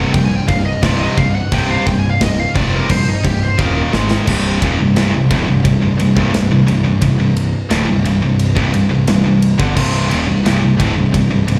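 A straight, steady 4/4 pulse at 87 BPM drives this relentless, heavy metal passage in C minor, taken from a longer piece and heard as if through a club's PA with a live-room reverb. A warm, high-gain lead guitar opens with a distorted solo that ends at 3.8 seconds, over two picked rhythm guitars playing a low riff: one bright and up front, the other tighter and set further back. Beneath them sit a growly, round fuzz bass and a gritty, saturated drum kit with a tight kick and bright cymbals, whose fill from 3.6 seconds carries the band into a C minor section at 4.3 seconds.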